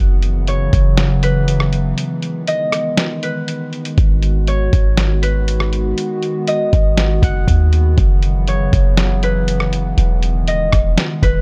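A ringing, fingerpicked concert harp carries the melody through a low-pass filter and tape echo in this hazy, ethereal cloud-rap fragment in G# minor at 120 BPM with a half-time feel, floating over a warbling, nostalgic pad with chorus, built-in reverb and sidechain pumping, a deep, boomy, clean 808-style bass and muffled, pitched-down sampler-style drums with a thumpy kick, in a dark mix with little room reverb, a break from 2.0 to 4.0 seconds, and chords moving from F#7sus4 through Emaj7 to G#m7.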